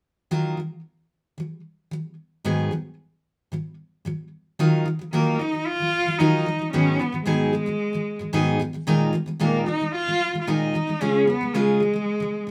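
This pop fragment, cut from a longer piece, has a tender, reflective mood and moves at 112 BPM in a straight 4/4 feel in Eb minor. A picked steel-string acoustic guitar opens at 0.3 seconds, playing accompaniment with a full-bodied, jumbo sound placed up front. The harmony moves from Ebmadd9 to Abm7 and back, then on to Bb7sus4 before reaching Db. At 5.1 seconds a rich, bowed cello enters with the melody, played by one player with a soft attack, vibrato and expressive portamento, and it has a distant quality. A moderate studio reverb gives the guitar and cello a sense of space, and both continue until the fragment ends at 12.5 seconds.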